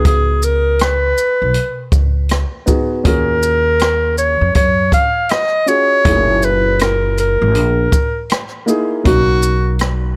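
A swung 80 BPM jazz-hop groove in Eb minor sets a cool, nocturnal mood, with an open acoustic jazz kit of boomy kick, rim click, hi-hat and shaker under a woody pizzicato upright bass, a dark, mellow grand piano comping through Db7sus4, Ebm11, Gb13 and Bmaj7 chords, and a clear, up-front clarinet singing the lead with light vibrato and scooped notes, all in a small room ambience across this 10.2-second fragment of a longer piece.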